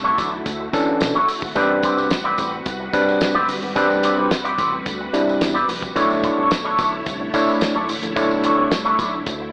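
A lush, warbling string machine opens this short, slick cut of early-eighties boogie funk, holding sustained chords with an ensemble chorus while a bright, twangy electric guitar with an envelope filter plays a clean, picked riff through analog chorus, and a rubbery, hollow square bass bounces underneath from the very first moment. At 0.2 seconds a damped 70s drum kit joins with a fat, dry snare, tight kick and hi-hat, joined by a jingly tambourine set distant in a large room. From 0.7 seconds a barky, overdriven tine electric piano comes up front with gritty accompaniment through a combo amp, the most prominent voice in the mix. The groove sits at a straight 109 BPM in 4/4 in A dorian, moving from Bm11 to Am11 and back to Bm11 at 6.0 seconds. Moderate plate reverb and a small room surround the parts, and the whole piece carries an AM radio coloring that gives the funky, polished arrangement a vintage broadcast feel.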